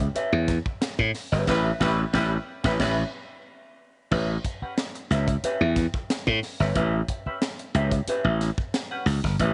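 Funk in A mixolydian at 91 BPM in a straight 4/4, this strutting excerpt is cut from a longer piece and runs about 9.5 seconds over an A9 chord. A bright, growly slap bass sits up front and carries the low end, joined throughout by a crisp fusion drum kit with a high-tuned snare, punchy kick, hi-hat and crash cymbal in a polished, airy studio sound. A clean, picked semi-hollow electric guitar with a hollow-body character fills in the accompaniment through a wah effect. From 1.5 to 3.0 seconds a clear horn section with light vibrato adds a distant, roomy second line, falling inside a band accent that stretches to 4.1 seconds, where the music moves into a new section. Light reverb and a small room ambience surround the mix.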